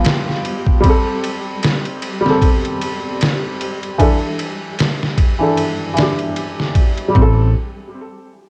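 A muted, intimate felt piano opens this dark, brooding trip hop fragment, its tremolo, tape echo and low-pass filter sweep shading soft chords from G7 to Am7 and E7sus4 over a gritty, pitched-down sampler-style drum kit with a thumpy kick, medium-tuned snare and ride cymbal, swung lightly on the 16ths. A grainy, flickering granular texture hovers detuned and reverberant in the background. At 7.2 s a woody, growly pizzicato upright bass lands up front on a low A as the chords return to Am7, all wrapped in light reverb and the warbling pitch drift of a worn cassette.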